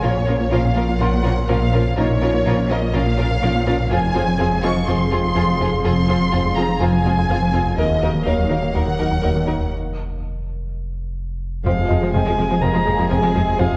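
A tense, futuristic cinematic hybrid orchestral and electronic film score cut from a longer piece, where lush bowed violin sections carry the melody and a softer second line over a viola section with portamento, an expressive cello section, a woody double bass section, a clean sine sub bass and a round analog bass riff, while a warbling, nostalgic tape-like pad with chorus holds chords, a squelchy resonant blip pluck plays very quiet arpeggios and a felt-muted upright piano adds intimate texture, the whole mix carrying a worn cassette-tape drift in a moderate scoring-stage room, and after a break at 9.7 s a smooth-topped solo violin with tape echo enters at 11.7 s alongside bright trombone and distant, dark French horn chords.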